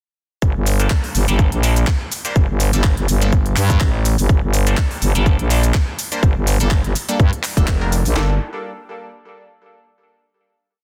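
A four-on-the-floor kick with a tight punch and a cracking snare drives this aggressive, gritty bass house piece at 124 BPM in G minor, its 16ths swung at 55%, while a second garage kit layer adds crisp programmed hats, cabasa and handclaps with soft clipping on the snare, both kits tape-toned and re-recorded in a large room. A growling, thick FM bass with tube saturation and sidechain pumping carves out chopped phrases up front from 0.4 s, and from 0.8 s a nasal, band-passed chord stab, bright through phaser and digital delay, plays syncopated hits that move one shape in parallel over a Gmadd9. The drop runs until 8.2 s, when a final chord rings out to close a dense, heavily limited master set in digital ambience.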